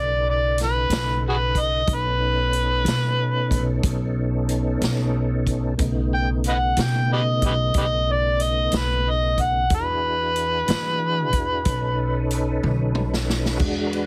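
Laid-back and gritty, this slow blues moves at 61 BPM in a straight 12/8 feel, a short cut from a longer piece. An amplified, overdriven harmonica carries the melody up front in a jazz-style solo, its soft-attacked notes colored by vibrato, scooped pitches and tongue slaps until it stops at 12.3 seconds. Beneath it, a clean tonewheel organ holds sustained chords through a slow rotary speaker with chorus vibrato, while a woody, growly upright bass is plucked on steel strings and sits prominently in the mix. A vintage acoustic drum kit joins at 0.6 seconds with dark cymbals, a medium-tuned snare and a punchy kick, its rolled-off top giving it a mellow, natural room sound, and it plays a fill from 12.6 seconds. The harmony rests on B9, moves to E9 and returns to B9. Light reverb and a heavily compressed, radio-like sound give the whole recording a vintage, boxy character.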